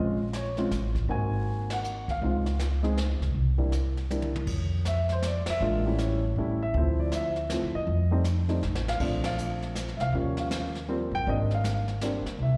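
A dark, mellow baby grand piano carrying the melody and a woody, up-front pizzicato upright bass open this relaxed, swinging jazz piano trio excerpt in 3/4 at 159 BPM, joined at 0.3 seconds by a brushed drum kit with a boomy kick and medium-tuned snare, the piano and drums both touched by slapback echo, as the band hits shared accents, the drums add short fills near 4.1 and 8.6 seconds, and the chords move from Bbm9 toward a closing Abmaj9#11, all heard as a live gig through the venue's PA in a recital-hall reverb.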